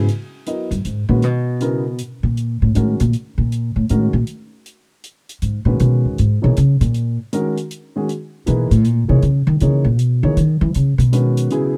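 A swung 3/4 pulse at 158 BPM carries this short cut from a longer modal jazz piece in F# mixolydian, open and spiritual in mood, with an upright bass solo running from 0.1 seconds to the end, its pizzicato steel strings woody and up front. A dark, mellow grand piano with long sustain accompanies through chords moving between F#13sus4 and D#m, while an acoustic hi-hat keeps time at a low level. The dry, close 1970s-style studio sound sits in a small room ambience.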